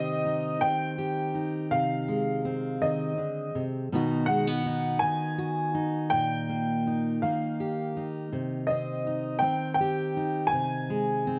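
A woody, slightly detuned upright piano carries the melody up front, its worn, clear tone lingering with long sustain in a plate reverb. A full-bodied fingerpicked steel-string dreadnought guitar accompanies it throughout the 11.4 seconds, cycling through Cm, Ab/C, B and Eb/Bb. This pastoral acoustic folk fragment, cut from a longer piece, moves at a slow 54 BPM in 6/8 with a warm, unhurried mood, captured by close, detailed microphones in a moderate studio room.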